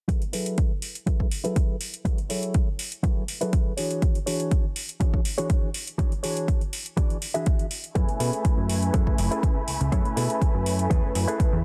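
Filtered disco house at 122 BPM in F# minor with a sensual, groovy feel: a clean, direct-recorded electric guitar riff pumps under a filter sweep alongside metallic hi-hats and an overdriven, punchy, up-front kick, and around 8.0 s a plucky, funky sawtooth bass, round, dark synth brass with chorus and phaser, and a rich chamber violin section with expressive vibrato join in, each pumping and low-pass filtered over a dense, heavily limited mix with light digital reverb.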